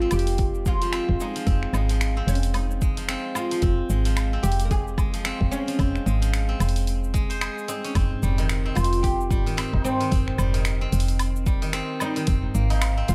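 A plectrum-plucked, fretless oud with doubled strings sings a deep melody over silvery, fingerpicked steel-string zither arpeggios, both touched with digital delay, as a round, mellow FM bass sits up front and a deep house kit of finger snaps, dark hi-hats, shaker and woodblock joins with a deep, layered electronic kick to drive this earthy, hypnotic organic downtempo groove at 111 BPM with swung sixteenths in F minor, moving from Fm through Dbmaj7/F, Cm/F and Bbsus2/F in a small, lightly reverberant room, and a high-tuned, distant tabla enters in the background at 8.1 seconds.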